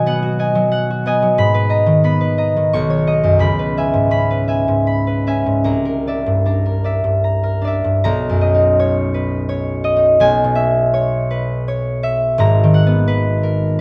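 A bright, ringing concert harp sits up front, fingerpicked across a span from G#1 to C#6 in this graceful, serene classical solo piece in B major. It moves in a rubato 3/4 at roughly 73-93 BPM, drifting through lush chords such as Bmaj9, C#m7 and C9 before a new passage opens at 8.0 s and settles on G#m9. A moderate stone-room reverb lends the harp an airy halo in this short extract from a longer work.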